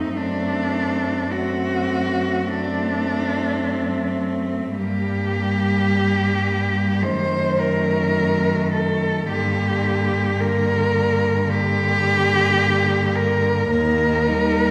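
A single bowed cello carries the melody up front, its rich, focused tone shaded with vibrato as it sings between D4 and C5 in this elegiac, solemn excerpt for cello ensemble. Set in G minor at a slow 53 BPM in 4/4, the piece moves with a free, rubato feel, and the tuning sits at A4 = 443 Hz. Beneath it, a second cello holds a quieter line in the background, close and shaded with vibrato, while a third supplies a smooth, even accompaniment with a warm, vibrato-touched tone. A bass cello, also up front, anchors the harmony from Eb2 to G2 with expressive portamento. The harmony passes from D7/F# through Gm and F#dim7 before settling toward Eb near 13.7 seconds, and a wet reverb gives the ensemble the spacious resonance of a church or concert hall.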